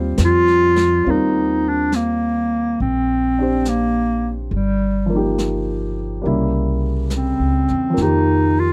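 Intimate and tender, this short jazz ballad fragment in a gentle swing places a breathy clarinet up front from 0.2 seconds, singing with vibrato and scooped notes, over a woody, long-sustaining upright piano, a thumpy pizzicato upright bass and a softly brushed drum kit, all captured in a dry, close 1970s-style studio sound.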